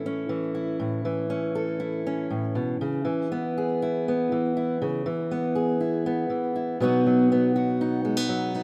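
A rough home demo sound frames this short folk fragment, with a light studio reverb giving the room some air and a solo fingerpicked steel-string acoustic guitar placed up front. The guitar carries a digital delay and has the warm ring of fresh strings, with finger squeak audible as the hands move on the neck. Its mood is warm and hopeful, moving at a straight pulse in four. The harmony travels from A to C#m7 at 2.8 seconds and settles on B at 6.8 seconds, while the guitar spans a range from A2 to A4. Cut from a longer piece, it lasts just 8.6 seconds.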